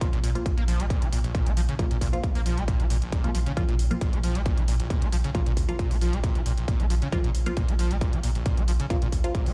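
A squelchy, screaming acid line with a resonant filter sweep and distortion drives this hypnotic, relentless peak-time techno excerpt, pumping against an up-front overdriven kick drum and a thick, saturated sub bass. Muted, detuned dub chord stabs colored by phaser and delay pluck over an overdriven electronic hi-hat, while a very quiet, eerie metallic drone sustains underneath. The mix is fairly dry yet sounds as if pushed through a big sound system in a bare room, and this short cut from a longer piece holds one steady groove for 9.5 seconds.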